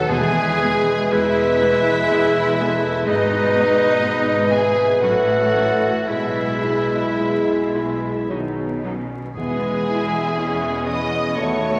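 Opening on the full orchestra at once, this tender classical passage in E major drifts in a rubato 3/4 at 54-63 BPM. A lush, distant violin section sings the melody over second lines from a clear oboe, a very quiet hollow flute ensemble, a mellow clarinet and a second violin section. A bassoon accompanies while a background French horn section and a trombone section hold sustained chords, a faint ringing harp spins arpeggios, and violas, cellos and double basses fill in below. Timpani sound at 0.1 s and again at 9.4 s, and the passage is heard through reverberant concert hall ambience and vinyl crackle.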